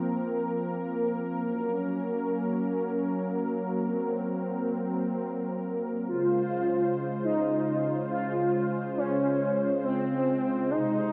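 Bathed in a lush hall reverb, this short cut from a longer synthwave piece moves at 104 BPM with a cinematic, driving mood. A detuned sawtooth analog pad with a soft attack and chorus holds sustained chords up front, shifting from Bbsus2 to Gb and then to Dbmaj7. At 6.1 seconds an expressive, mellow lead blending sawtooth and triangle tones enters with portamento and vibrato, its melody colored by ensemble chorus, cassette tape and delay.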